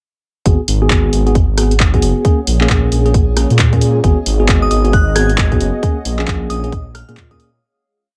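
Late-night and moody, this short two-step UK garage piece in G# dorian moves at 134 BPM with a swung 16th-note feel, built on a tight four-on-the-floor electronic kick, a punchy, tape-warm analog drum machine skipping through swung hats, claps and rim clicks, and a dark, rumbling detuned saw bass playing an up-front, syncopated line over G#m7 and A#m7 chords. A bell-like tine electric piano stabs a rhythmic close-voiced chord riff through low-pass filtering and analog delay, while a blurred, evolving granular cloud pad drifts in at 1.6 seconds with slowly shifting chords and sidechain pumping, joined at 4.0 seconds by a smooth, chorused analog pad holding a high note in the background. A crystalline FM synth bell adds short answering phrases with chorus and delay from 4.6 seconds, all set in an echo-heavy digital ambience as the groove fades out over its final seconds.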